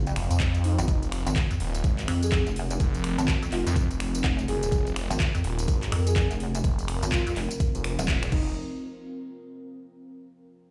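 A deep, moody pad and a pulsing, saturated wobble bass open this aggressive, swaggering bass house cut in F minor at 125 BPM with a 16th-note swing, soon joined by a swirling phased saw bass, an overdriven garage kit of metallic hats, snaps, claps, tambourine and crash, a knocking electronic kick, and a breathy flute-like lead drifting through dub echo in the background, all ringing through a stone room, with a band accent at 8.1 seconds shortly before the drop closes at 8.6 seconds.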